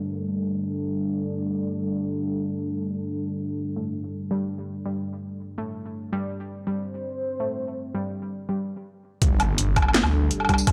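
A moody, full-bodied analog pad with chorus, 12-bit sampler grit and sidechain pumping carries this dark, spacious half-time drum and bass excerpt under a filter sweep, opened by a brief background downlifter and joined at 3.8 seconds by a warbling, lo-fi pluck arpeggio with tape echo, before a background impact marks a drop at 9.2 seconds where a swirling, phased, tube-saturated detuned saw bass, a layered electronic kit with cracking snare and bright hats, and a thumpy, pitched-down electronic kick all hit up front in a dry, gritty hardware sound.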